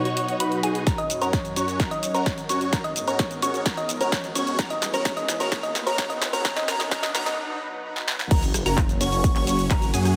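Powerful and anthemic, this 129 BPM festival progressive house piece builds for 8.3 seconds as a huge, euphoric supersaw riff with phaser, delay and a filter sweep rides over a lush, sidechain-pumped pad, a dark plucky arpeggiated lead with cassette-tape colour and delay, a round, tine-like thumb-piano-style pluck melody, and layered big-room drums with claps, shaker, hats and crash, joined by an up-front punchy electronic kick from 0.9 seconds and a background riser, until a brief break at 7.4 seconds gives way to the drop, where a thick detuned saw bass and sub drop land, all set in a moderate concert-hall reverb with a heavily compressed, radio-like sound.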